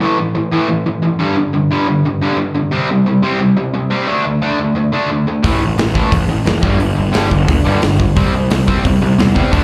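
Punk rock at 176 BPM in a straight 4/4, energetic and rebellious, cut from a longer piece and heard as a live gig through a club PA with light reverb. A bright, distorted electric guitar, double-tracked and up front with slapback echo, opens alone on a picked riff over power chords moving through A5, G5, C5 and D5. At 5.4 s the fuzz picked electric bass and a big rock drum kit come in together, the bass overdriven and punchy while the acoustic kit brings a punchy kick, a medium-tuned snare and hi-hat in a big room. The chord cycle returns to A5 and G5 before landing on C as the section closes at 9.6 s. The guitar sits slightly louder than the bass and drums, keeping the riff at the front of the mix.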